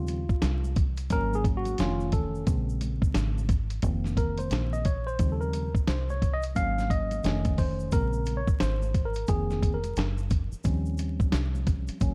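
A worn, slightly out-of-tune tine electric piano, lightly overdriven through its built-in speakers, takes a mellow solo over Eb13, Ab7sus4, F7b13, Bbm9 and F7sus4 changes in this smoky, swung jazz-hop excerpt at 88 BPM, carried by a round, foam-muted fingered dub bass, a gritty 12-bit sampler-style drum kit with a thumpy kick and medium-tuned snare recorded in a large room, and bright, close congas and tube shaker tucked in the background, all within a dark, dry production dusted with vinyl crackle.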